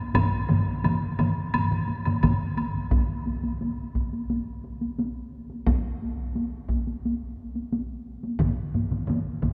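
Heavy-sticked taiko drums pound close and up front in this driving, powerful traditional Japanese ensemble piece in straight 4/4, joined by a dry, woody woodblock until 2.7 s and by hard-sticked taiko with a small-room sound, while two taiko layers drop out at 2.4 s and return at 8.4 s, all set in a church or concert hall with a long, wet cathedral reverb.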